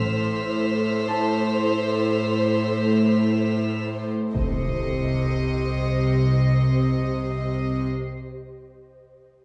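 A tense, uneasy cinematic passage in free time opens with an ethereal, airy pad sustaining chorused chords beneath a soft, sul tasto violin section melody, rich up-front cellos and pure, bowed double basses, while a ringing, thumb-plucked harp sits in the background until 4.4 s and a smooth-topped, high violin texture floats above, before a huge, dark impact lands at 4.3 s as the harmony shifts from Am to Cm, all set in a stone room heard from further back.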